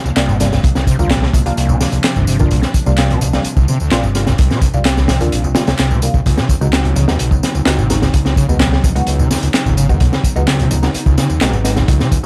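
A screaming, squelchy acid riff with resonant distortion and chorus drives this gritty, swaggering breakbeat excerpt at 128 BPM, over an up-front, crunchy, punchy-kicked drum kit, a round picked electric bass in the background, overdriven electronic tambourine and handclaps, very quiet damped congas, muted phaser-and-delay dub chord stabs, and a warbling, nostalgic lo-fi pad, all in a dark small-room production as the harmony shifts from C9sus4 to C#9sus4 at 6.3 seconds.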